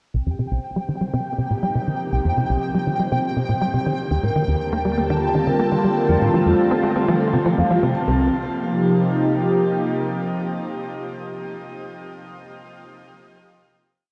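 Soaked in a shimmering reverb tail and the warbling pitch drift of worn cassette tape, this expansive, cosmic piece of sequencer-driven space music sets a punchy, ring-modulated sawtooth sequencer bass with a filter sweep against mellow, ringing soft-mallet vibraphone arpeggios in a ten-step loop that drifts against the bar, a held, pulsing high note from a gated triangle texture, and a phased, detuned analog pad that fades in alongside the vibraphone before its swirling chords carry the final chord from 8.1 seconds, outlasting the other parts.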